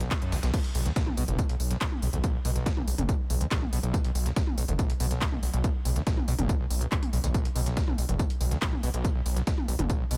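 A punchy, up-front electronic kick drives this hypnotic, intense peak-time techno cut at 141 BPM in B harmonic minor, alongside a gritty, saturated sawtooth synth bass that pumps beneath it, a squelchy, resonant acid riff with distortion, lush chorus, cassette-tape colour and delay sitting in the background, a layered techno kit of crash, handclaps, smooth hats and toms, and a dusty, high-passed sampler-style kit of hi-hat, fat snare and tambourine, all in a dry small-room sound as the drop lands at 0.5 seconds.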